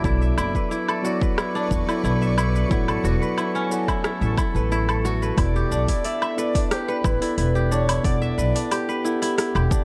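A meditative, hypnotic organic downtempo groove at 90 BPM in E dorian opens with a deep, overdriven electronic kick up front and a deep house kit of metallic hi-hats, rim click, shaker and woodblock, under a woody pizzicato upright bass and a mellow tine electric piano with tape echo, both pumping with the sidechain, while a crisp, fingerpicked kora rings out arpeggios through tape echo and a blurred, pumping granular cloud pad sits in the background until 5.3 seconds, after which a breathy, warbling flute-like synth lead with chorus and tape echo carries the melody from 5.4 seconds as the chords move from Bmadd9 and A to Em7.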